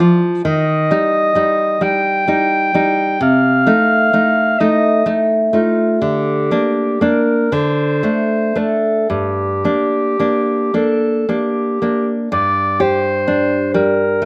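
A romantic duo for clarinet and classical guitar in G minor, this solemn, yearning excerpt moves in a slow, rubato 6/8 at 36-44 BPM in dotted quarters, with a warm, distant clarinet singing the melody in classical style while a full-bodied, fingerpicked nylon-string guitar, its finger squeaks audible, accompanies through Eb, Adim/C, Gm/D and D5 before settling on Gm, both parts up front in a dry open-air sound as a new section begins at 12.3 s.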